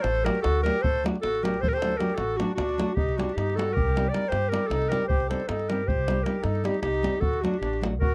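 Fiery and virtuosic, this short cut from a Balkan wedding-band folk piece races in 11/8 at 310 BPM in eighths, with a clear, soft-attacked classical-style clarinet playing the solo melody up front, a reedy, slowly beating accordion carrying the second line through tape echo, a full-bodied fingerpicked nylon-string guitar with audible finger squeak accompanying from 0.2 s, a woody, thumpy gut-string upright bass plucked pizzicato, and a tight davul in a small room, all moving from D to C minor and back over a C Dorian sharp-four colour in a dry, close 1970s-style studio sound with light reverb.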